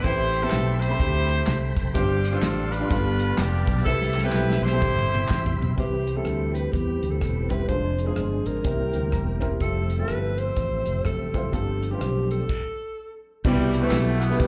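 Heard through a club PA with a touch of room reverb, this short cut from a longer uptempo gospel piece moves at 125 BPM in C major with a swung feel, reverent and uplifting in mood. A tight, vintage-toned horn section carries the melody up front, colored by slapback and tape echo, while a woody, slightly detuned upright piano with its own slapback comps underneath. A tonewheel organ holds smooth chords in the background through a slow rotary speaker and chorus vibrato, its key click audible, as a round, up-front fingered electric bass and a dry, dark soul drum kit with a tight kick anchor the groove. Tambourine, tube shaker and group handclaps sit low in the mix alongside the horns, and a drum fill leads into the middle passage at 5.8 seconds, where a forceful, punchy alto saxophone takes the solo melody with vibrato. The piano adds a brief fill, the band hits a stop at 12.5 seconds, and the percussion returns at 13.4 seconds over a Cmaj7 chord, with the horns following a moment later.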